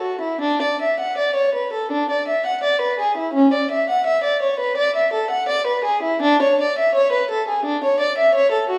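A solo violin with a reedy, gut-string tone in period style opens at once and plays alone, up front, through this serene, dance-like baroque-style suite movement in 4/4, its rubato bowing ringing into the wet reverb of a recital hall for the full 8.8 seconds of this short cut from a longer piece.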